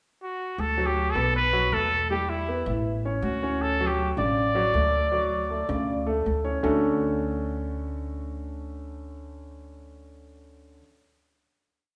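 Bathed in the reverb of a concert hall, this short, lively and danceable Afro-Cuban jazz piece opens with a trumpet alone in the pickup bar, its vintage tone marked by light vibrato and scooped notes as it spins a motif-based melody until 6.2 seconds, while a woody, thumpy pizzicato upright bass plays a tumbao that anticipates the chords and a natural-sounding baby grand piano lays down a short-sustained montuno in octaves, the two carrying on through a final chord to 10.8 seconds.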